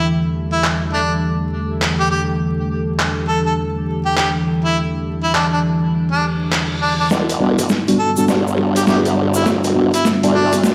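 Glitch hop at 102 BPM in E minor, this funky, swaggering clip from a longer piece swings its sixteenths over a moody Em7 that shifts to Em9 at 7.1 seconds. A warm, up-front harmonica carries the jazz-style solo melody with vibrato, tongue slaps and scooped notes, trailed by dub echo, while a deep, detuned analog pad holds dark, full-bodied sustained chords roughened by 12-bit sampler grit and pumped by sidechain. From 0.6 seconds a gritty, pitched-down boom bap kit of handclaps, hi-hat and a high-tuned snare sits up front with overdrive and studio reverb. After a background reverse cymbal rises into the second half, a drum fill and build-up arrive at 7.1 seconds as a wobbling formant-sweep bass with fast attack and overdrive enters alongside a very quiet, thumpy electronic kick and a grainy, bright egg shaker recorded close. Mellow, clean tine electric piano stabs join shortly after, ducking under the same pumping, and the whole mix plays through a big sound system in a bare room with lush hall reverb and vinyl crackle.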